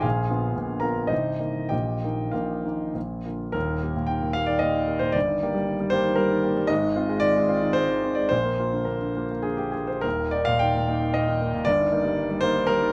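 A concert grand piano with a deep bass, long sustain and audible action noise sits up front in this intimate, passionate fragment of a romantic character piece for solo piano in Eb major, played with rubato in 3/4 at 92-120 BPM, where an opening phrase built on a Bb7b9 chord gives way at 3.6 seconds to a passage that settles on Eb and returns to it near 10.0 seconds, all caught by close, detailed microphones in light reverb.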